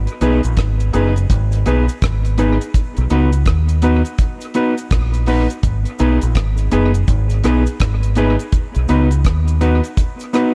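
A dry mix with little reverb and heavy echo opens this roots reggae piece, cut from a longer recording and set at 83 BPM in 4/4 with a swung sixteenth-note feel. The mood is hypnotic and meditative, moving between G#m and B in G# minor. A deep fingered electric bass sits up front from the start, round, punchy and direct, while an acoustic drum kit of hi-hat, kick and rim click plays dark and smooth with a tight kick, its sound trailed by dub echo. A mellow, clean electric guitar carries the accompaniment with its own dub echo, and a bright upright piano adds stabs with a woody, slightly detuned, worn character, audible action noise and long sustain. A cabasa sits quietly in the background, giving the groove a faint acoustic shimmer through to 10.5 seconds.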